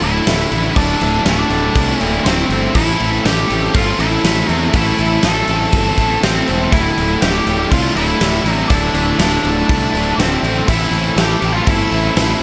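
A straight 4/4 pulse at 121 BPM drives this brooding, cathartic stretch of quiet-loud alternative rock, cut from a longer piece and built on Dsus2 and Am chords that later move to Amadd9. A big acoustic rock kit sits up front, its punchy kick, medium-tuned snare and crash cymbal ringing in a bright stone room. Two distorted electric guitars play picked riffs in the background, one overdriven and the other distorted, while a round, dark fingered bass growls beneath them with overdriven fuzz. Over the top, an octave-fuzz lead guitar carries the melody with a dusky, picked tone and a slapback echo. At 6.7 seconds a very quiet studio string section enters with smooth, bowed sustained chords and light vibrato, adding a clear sheen high above the distortion, all set in light reverb.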